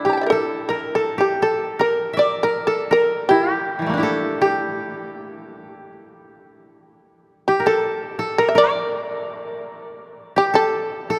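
A dark production set in a long, cathedral-like reverb frames this brief cut from a longer piece of austere, solitary Japanese chamber music, played in a loose rubato feel over 2/4. A powerful, buzzing shamisen, plucked with a plectrum, carries the melody up front with a percussive bite. Beneath it, a bright, woody koto played with fingerpicks adds a second line, and the music moves into a new section at 6.4 seconds.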